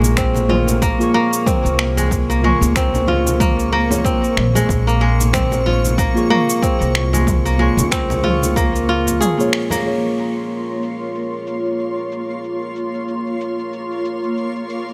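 Lightly reverberant and mystical, this organic downtempo piece floats on muted, felt-like synth keys with chorus, tape echo and a dark, intimate tone, beneath a cloudy, evolving granular pad, while a bright, crisp fingerpicked kora rings up front through its own echo. A woody pizzicato upright bass pumps with sidechain beneath a punchy, overdriven electronic kick. A layered deep house kit of cabasa, finger snaps, toms and crash cymbal swings alongside very quiet, distant congas with hard hands. The bass drops out at 9.2 seconds, just before a band accent at 9.5 seconds, and a filter sweep runs on the keys from 9.9 seconds to the end.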